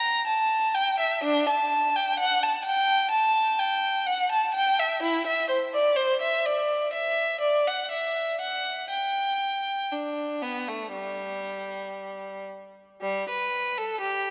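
A deep church reverb, with a decay of about 3.3 seconds, surrounds a single violin placed up front. This is a classical, baroque-style suite movement for unaccompanied violin in G major, serene yet dance-like, moving at roughly 55-65 BPM in 4/4 with a flexible, rubato feel. The bowed violin sounds rich and focused, played with vibrato as it ranges from G3 up to Bb5. The one player carries the whole texture alone from the opening through 14.3 seconds, and a new section begins at 13.0 seconds. This brief passage is cut from a longer piece, so it ends mid-flow.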